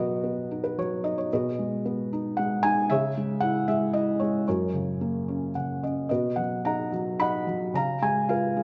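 Classical, lyrical solo piano in B major, this brief excerpt cut from a longer piece has a relaxed, sunny mood at 112 BPM in 3/4, with uneven beats and a rubato feel. A felt-muted upright piano plays alone from 0.0 to 8.6 s, ranging from F#2 to B5; its thick felt gives a soft, mellow, intimate tone that sits up front in the mix. A short fill on the felt piano appears between 5.3 and 6.1 s. The harmony moves from B through G#m/B, C#m and F# before returning to B and closing on C#7. A wet recital hall reverb with a 1.9 s decay surrounds the instrument, and the sound is rolled off above 7.7 kHz, giving it a gentle, warm character. The tuning sits slightly low, at A4 = 436 Hz.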